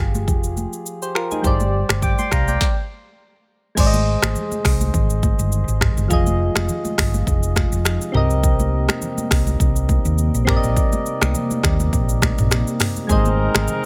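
Hypnotic and smooth, this afrobeats excerpt in C minor moves at 103 BPM with a lightly swung sixteenth feel, carried by an up-front electronic drum kit with a deep kick, sharp snare and metallic hats, bright high-tuned congas in the background, and a dark, round, punchy hollow-body fingered bass under mellow, chorused electric-piano-like synth keys. After a stop from 2.6 to 3.8 seconds, the harmony shifts from Fmadd9 and Gsus4 to Ab, Fm7 and Cm7, and a glassy, ethereal FM pad with ensemble chorus and reverb enters at 4.6 seconds. Near the close, at 13.1 seconds, a distant, roomy horn section with light vibrato and digital delay adds a brief second line over a return to Ab.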